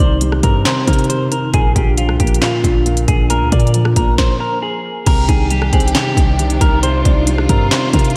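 Up-front trap drums with a hard-clipped kick, sharp snare, crisp hats, handclaps, rim clicks and crash drive this brooding, hard-hitting hip hop excerpt in C minor at 136 BPM with a half-time feel, over a deep, mellow sine 808 bass that decays under each note. A clean, fingered semi-hollow electric guitar carries the melody with subtle chorus and tape echo, while a soft, felt-muted upright piano with audible action noise and a vintage tone plays accompaniment, both softened by a low-pass filter. The parts pause for a stop at 4.2 seconds, then a lush, bowed studio string section enters at 5.1 seconds with smooth vibrato chords as the harmony settles on Cmadd9, all within a dreamy mix soaked in hall reverb.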